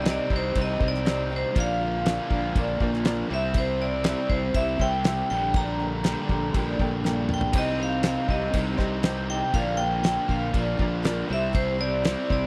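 This is a dry, close 1970s-style studio recording of a brooding, driving classic rock passage in straight 4/4 at 120 BPM, cut from a longer piece. Up front, a damped 70s drum kit with a fat snare and tight kick drives the music, adding crash and toms along the way and playing a fill between 7.0 and 7.5 seconds, while a growly, punchy fingered electric bass with fuzz and overdrive holds the low end. Two overdriven electric guitars play riffs: a bright cranked stack guitar, and a crunchy one set further in the background. Over them, a vibraphone struck with hard mallets carries the melody with a metallic, ringing tone, medium motor vibrato and slapback echo. Beneath, a clear, woody upright piano that is slightly detuned, a very quiet shimmering twelve-string acoustic guitar, and a very quiet, dark string machine on cellos holding sustained chords fill out the harmony. The chords move from C minor through B-flat and C to Gmadd9 over B-flat, then return through C minor, B-flat and C.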